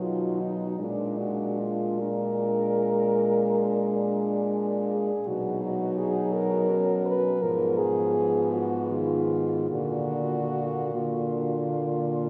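Four French horns sound together from the very first moment in a yearning, elegiac classical passage in a flexible, rubato 12/8. The up-front melody horn sings with a warm, smooth top and light vibrato over mellow second and accompaniment horns, the latter also placed up front, while a vintage-toned bass horn anchors the low end. A long, wet cathedral reverb from a church or concert hall surrounds the quartet through this 12.3-second fragment of a longer piece.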